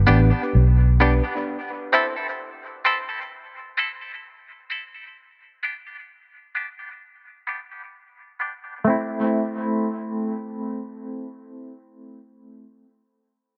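An echo-heavy mix bathed in spring reverb, with the top end rolled off, frames this deep, hypnotic reggae excerpt in A minor at a slow 65 BPM, moving between G and A minor chords. A round, punchy, foam-muted electric bass sits up front but plays only until 1.2 s, while a bright, clean, compressed semi-hollow guitar carries the accompaniment through to 12.9 s with tremolo and dub echo. A reedy, lightly overdriven electric piano, heard through its built-in speakers, adds low-level stabs soaked in dub echo until 4.9 s.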